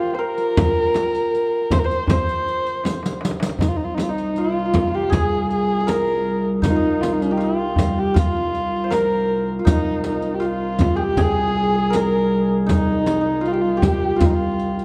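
A straight 4/4 pulse from tight, close-miked tombak and frame drum in the background, with soft-handed riq adding bright jingles, frames this soulful, melancholic Persian modal ensemble, where a single dark, woody kamancheh sings the melody up front with vibrato and portamento over a warm, shimmering hammered santur second line, and after a drum fill from 2.8 seconds a veiled, muted cello section enters at 3.6 seconds with a low bowed drone, heard through a moderate recital hall reverb and a dark, warm production.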